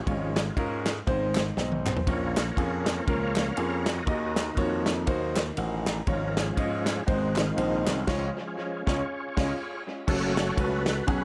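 Set in a small, lightly reverberant room with a heavy wash of echo, this jubilant, soulful uptempo gospel excerpt swings at 120 BPM in Db major, with a thick, overdriven tonewheel organ soloing through a fast rotary speaker and chorus vibrato over a clear grand piano with analog delay, a gritty, punchy slap bass, and an up-front soul drum kit with dark cymbals and analog delay that plays a fill at 1.6 seconds, while hollow group handclaps sit in the background until 8.0 seconds and the band hits an accent from 8.1 seconds.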